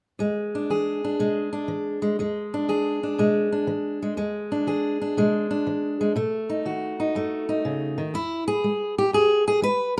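Gritty and rollicking, this short excerpt from a longer acoustic country blues piece moves at 121 BPM in 4/4 with a strong swing, set in E mixolydian. A lone fingerpicked steel-string acoustic guitar, bright and up front, carries it from 0.2 to 10.0 seconds, spanning low E2 to B4 as it rides an E7 chord, shifts to B7 at 6.2 seconds and lands on E at 8.1 seconds. The rough home-demo sound sits in a lively studio ambience.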